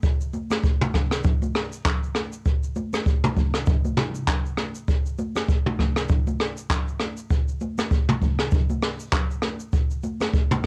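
A swung sixteenth-note groove in four drives this breezy, joyful afrobeats excerpt, cut from a longer piece. A jazz brush drum kit sits up front, its acoustic small-room sound carrying handclaps, hi-hat, rim clicks, shaker, toms and a boomy kick, all roughened by vintage 12-bit sampler grit and cassette tape character. Congas join at 0.3 seconds, sitting lower in the balance. They are high-tuned and ringing, played close with hard hands. Light reverb and the homespun cassette recording give the whole track an intimate, lo-fi charm.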